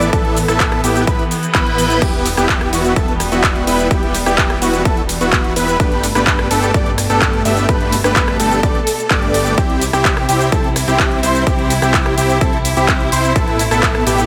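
Festival progressive house with a powerful, anthemic lift, cut from a longer piece, moving through Asus2, Em, Gadd9 and C before returning to Asus2. A huge, euphoric supersaw lead carries the riff, its detuned sawtooth voices and airy noise layer trailing delay and breathing with sidechain pumping. Alongside it, a thick, nasal unison lead spins arpeggios with a warbling vintage vibrato and filter sweep, also echoed by delay, while a dark chamber string section sustains bowed chords in the background with a smooth top. A fat analog bass with a moving notch and mellow detuned body anchors the low end, and a punchy, overdriven electronic kick sits up front from 0.1 to 13.9 seconds alongside a big-room dance drum kit of crash, ride, handclaps, rim click, shaker and metallic hats. A reverse cymbal sounds in the background between 1.3 and 2.0 seconds, and the whole mix sits in light digital reverb.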